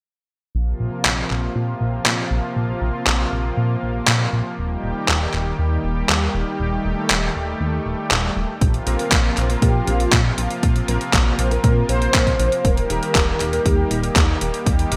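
A straight 4/4 pulse at 119 BPM drives this playful, sunny italo disco excerpt, with the handclaps and hi-hat of a detuned 8-bit drum machine sitting up front from 1.1 seconds over a glossy, chorused synth bass with a filter sweep and a thick, warbling unison pad, as the harmony moves between Bbsus2 and Eb. A punchy, overdriven electronic kick arrives at 8.6 seconds, followed by background stabs from a vintage electric grand piano with ensemble chorus and delay, and then a round, brassy synth brass melody with phaser and digital delay at 9.4 seconds. The bright 1980s-style digital production sits in a lush hall reverb.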